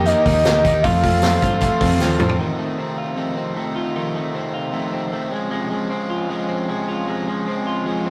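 A straight four-four pulse from a gritty, saturated vintage drum kit with a tight kick and mid-tuned snare anchors this short, youthful and breezy piece of jangly indie pop, with a very quiet, jingly tambourine riding close and dry beside it. A dark, foam-muted picked bass adds round, punchy low notes, while a buzzy combo organ with light vibrato sits in the background. A soft, octave-layered synth lead with chorus and tremolo carries the brief melody over the opening chords, and a drum fill around 2.0 s closes that first passage. At 2.4 s the drums, bass, organ and tambourine drop away, leaving the clean, compressed twelve-string electric guitar's up-front arpeggios and a bright, crunchy overdriven guitar to ring on together until 8.1 s. The whole take has the rough, tube-saturated feel of a rehearsal-room recording, with a moderate studio reverb.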